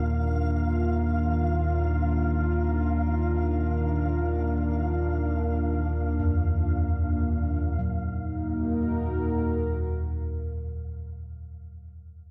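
Bathed in moderate spring reverb and heavy echo, this desolate dark ambient drone opens on an ominous, warbling low drone up front beside a moody, detuned analog pad with chorus, while a grainy, flickering texture hovers high above until 7.8 s. From 6.2 s, mellow bronze gongs struck with padded beaters play soft arpeggios through tape echo in the background, and at 7.8 s the harmony shifts to a new minor chord.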